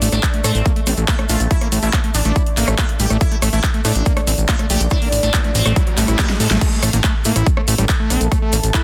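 A dense, heavily limited and dry-sounding psychedelic trance cut at 141 BPM in A phrygian, driving and hypnotic, where a punchy overdriven kick joining at 0.2 s and a big-room kit with a huge snare, claps, hi-hat, rim click and crash pound beneath a fat detuned sawtooth bass, a squelchy, screaming distorted acid riff soaked in chorus and dub echo, a buzzing, shimmering sitar melody with phaser, a grainy tube shaker, a very quiet bubbling stepped-filter chord texture and a faint riser, until a drum fill leads into the drop at 6.6 s, where a cloudy granular pad drifts in at 7.6 s.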